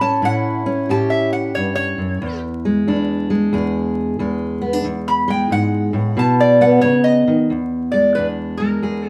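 A bright, nasal lap resonator guitar, played with fingerpicks and a metallic steel-bar slide, carries the melody in a solo over the first 7.5 seconds of this short, laid-back and gritty acoustic country blues fragment, swung in 4/4, while a fingerpicked steel-string acoustic guitar with a warm auditorium-body tone accompanies it, both sitting up front in a moderately reverberant live room dusted with vinyl crackle.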